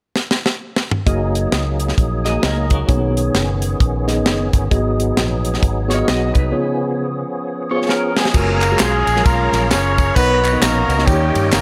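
A jazz-style horn section with light vibrato and octave doubling carries the melody up front from 8.2 seconds, crowning this reverent, jubilant uptempo gospel excerpt in F# major at 132 BPM with a swung feel. Tight, dry funk drums with bright cymbals and a high-tuned snare open with a fill at 0.2 seconds, then a round fingered electric bass, a mellow tine electric piano and a percussive tonewheel organ with key click, overdrive, chorus vibrato and slow rotary speaker enter at 1.1 seconds. A twangy, picked clean electric guitar with tremolo adds a second line in short spots, tambourine and handclaps with egg shaker sit in the background near the end, and light small-room reverb keeps the sound close.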